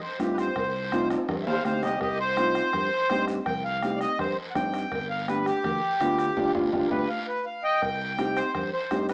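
A straight 4/4 cumbia groove at 165 BPM drives this passionate, fiery latin excerpt in C harmonic minor, moving from Cm to G7 at 4.9 seconds and back to Cm at 7.8 seconds. A reedy, close-miked accordion plays an up-front solo from the start, backed by a dark, woody upright piano with long sustain and a fingered electric bass. Behind them sit a soft-beater bombo, high-tuned congas, distant ringing cowbell and timbales and a raspy guiro, with a drum fill early on and another, together with a band accent, leading into the closing section, all heard through a moderate large studio reverb and a small speaker sound.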